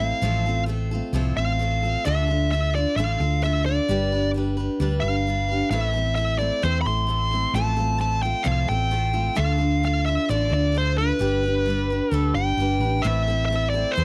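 A dry, close studio sound with a 1970s character frames this dusty, wistful fragment of folk rock and heartland rock in a straight 4/4. An overdriven, smooth lead guitar with a dark edge carries the melody up front over a bright picked steel-string acoustic guitar, where finger squeaks can be heard, and a round, amped hollow-body bass played with the fingers. All three parts sound together for the full 14 seconds as the chords cycle from F/A through Dm and G to Am.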